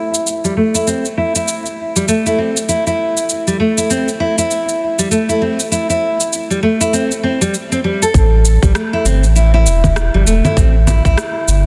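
A swung sixteenth-note groove of tape-warm electronic cabasa, rim click and congas, its snare softly clipped, carries this meditative, hypnotic organic downtempo fragment, where a bright, up-front fingerpicked nylon-string guitar with audible finger squeak spins arpeggios through a filter sweep and tape echo, joined at 8.1 seconds by a round, sidechain-pumped sine sub bass and a tight electronic kick drum, all beneath light reverb and a dense, heavily limited master.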